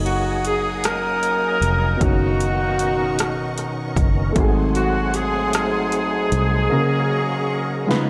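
A breathy alto saxophone carries the soulful, hopeful melody alongside a clear, distant horn section in this slow 6/8 gospel excerpt at 51 BPM in F# major, backed by a dark baby grand piano, a gritty overdriven tonewheel organ with fast rotary speaker, lush strings, a punchy fingered electric bass that drops out at 6.7 seconds, and overdriven 80s electronic pad drums with a gated snare that close on a fill at 7.9 seconds, all set in a moderate concert hall reverb.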